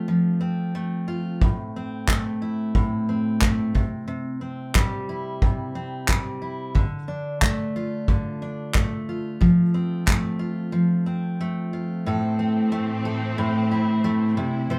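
The recording has the moderate ambience of a studio room, with a band captured playing live together, and this brief cut from a longer piece carries a reflective, wistful acoustic pop mood with a gently swung sixteenth-note feel. Up front, a picked steel-string acoustic guitar with a jumbo, full-bodied tone carries the accompaniment throughout, its finger squeak audible as it moves through F, A minor, C, D minor and back to F. An unplugged drum kit joins at 1.4 seconds with handclaps and a punchy kick played with bundle sticks, sounding natural and close in a small room, and it drops out at 10.3 seconds. A short break follows at 10.7 seconds, leaving the guitar alone. At 12.1 seconds the harmony settles on A minor as a rich studio string section enters softly underneath, its bowed ensemble sustaining lush, focused chords with vibrato.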